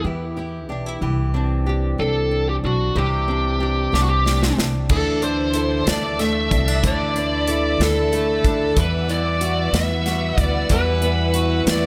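In a swaying 6/8 lilt at 62 dotted-quarter beats per minute, this romantic pop ballad excerpt opens on Em and Cadd9 with a dark, distorted electric lead guitar carrying the melody up front over a bright, double-tracked flamenco guitar with audible finger squeak, a fingerpicked steel-string acoustic guitar playing arpeggios, and a woody pizzicato upright bass. A studio drum kit with a punchy kick and bright cymbals enters with a fill at 3.9 seconds. At 4.9 seconds the harmony moves to Dsus2 and a lush, bowed string section with vibrato settles in the background before the close on Emadd9.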